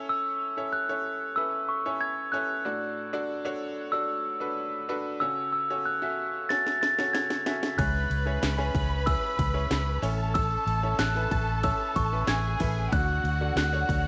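A straight 4/4 pulse at 94 BPM drives this earnest piano-driven pop excerpt, where a mellow, bell-like glockenspiel played with rubber mallets carries the melody over a brilliant, woody upright piano, moving through A, D, F#m and C#m. A house drum kit with a punchy kick, cracking snare, metallic hats and handclaps arrives with a fill at 6.5 seconds. At 7.8 seconds a lush, bowed violin section adds a second line and a dark, foam-muted, round fingered electric bass comes up front, all set in a light small-room reverb.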